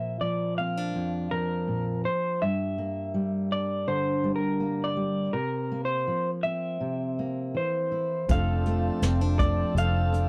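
An intimate, hopeful acoustic folk-pop ballad in F major at 82 BPM, this brief excerpt opens with a dark, slightly broken-up electric guitar melody through a small old amp, its harmonic tremolo shimmering over a fingerpicked steel-string acoustic guitar as the chords move from Bb through Gm to C7sus4 and C7. At 8.3 s the harmony settles on F6 as a reedy, breathing harmonium, a round, punchy foam-muted electric bass and a vintage brush drum kit with tight kick and rolled-off top join in. The sound is dry and close in a 1970s studio style, with the guitars and bass up front.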